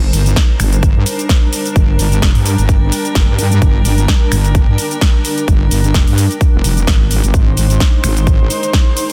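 Swung sixteenths push this bass house cut along with a bouncy, swaggering strut, anchored by a punchy, up-front electronic kick that arrives at 0.4 seconds. A big-room dance kit fills in finger snaps, shaker, a punchy snare and metallic hi-hats, all set in studio reverb. Beneath it, a heavy, saturated wobble bass growls with a detuned sawtooth-and-sine body, thickened by chorus and pumping against the kick before it drops out at 8.5 seconds. A dark chamber string section holds sustained bowed chords with a nasal, reedy gut-string tone, its top softened by a low-pass filter and breathing with sidechain pumping. Far in the background, a granular cloud pad drifts and blurs with a slow attack and long tails, while the harmony shifts from G minor to A-flat near the end of this dense, heavily limited passage cut from a longer piece.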